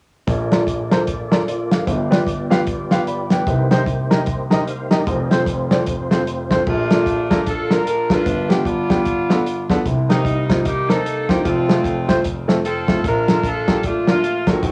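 A home cassette recording with a small, booth-like room sound carries this uplifting, hopeful stretch of uptempo gospel at 150 BPM in Bb major, lightly swung in 4/4 and cut from a longer piece. Up front, a dark, smooth soul drum kit with a tight kick and cassette-tape character sits beside an intimate grand piano with audible action noise, while a lightly overdriven tonewheel organ with key click, chorus vibrato and slow rotary speaker holds sustained chords in the background until 6.6 seconds. At 6.7 seconds a clear, punchy saxophone section takes the melody with tape echo and a loose, pop-style feel over a cycle of Bbmaj7, G7, Cm7 and F.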